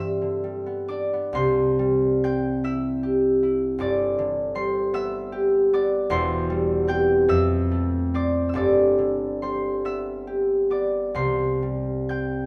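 A moderate stone-room reverb surrounds this recording, which is heard from further back in the room, though the concert harp itself sits up front with a warm, ringing, fingerpicked tone. It is a serene, peaceful classical passage for solo harp, cut from a longer piece, in C major and a rubato 6/8 that moves at roughly 42-53 BPM in dotted quarters. The harp spans from E1 to G6, opening on G before settling onto C at 1.3 seconds, then moving through G, C/E, F and G and returning to C at 11.2 seconds.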